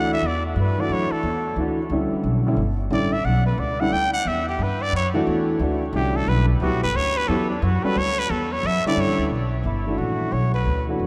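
Opening at once on a muted trumpet solo, nasal and gritty with light vibrato, this spiritual, intense jazz waltz in E dorian swings at 178 BPM over an Em9 chord, with an intimate concert grand piano showing audible action noise and a woody, up-front pizzicato upright bass, all bathed in a vast cathedral reverb in a fragment cut from a longer piece that ends around 11.1 seconds.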